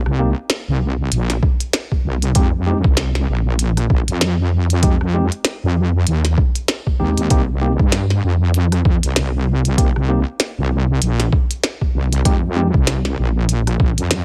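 A swung 97 BPM glitch hop groove in C minor, playful and gritty, opens on a heavy, detuned sawtooth wobble bass with chorus and tube saturation, joined at once by a glitchy electronic kit of clicky hats, rim clicks and a tiny tape-warm snare, clean tine electric piano stabs through a combo amp with sidechain pumping and tape echo, and from 1.4 seconds an overdriven, pitched-down, thumpy kick, all in a dry mix with a faint mains hum across chords moving from C7(no3) through Fm7 to F5 in this short section cut from a longer piece.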